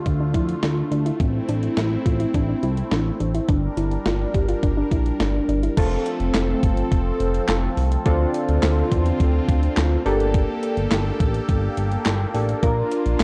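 A clean 12-bit digital drum machine sits up front in this driving, cool synth-pop excerpt at 105 BPM in D minor. Its thumpy kick, medium-tuned snare, hi-hat, handclaps and crash cymbal are pushed through overdrive and carry the sound of a large room. Beside it, a smooth synth bass with tube saturation holds the low end, dark and sustained with a ring-modulated edge. A swirling, phased analog pad lays detuned, wave-folded chords underneath throughout, while a soft, round pluck plays chorused arpeggios with tape echo until 5.8 seconds. At that point the harmony moves from Dm, Am and Gm to F, and chorused analog keys take up the accompaniment with an evolving tone shaped by a filter sweep, passing through Dm7 and Gmadd9 before landing on Bb. The mix is dry and gritty, with transformer saturation and a cassette-tape character.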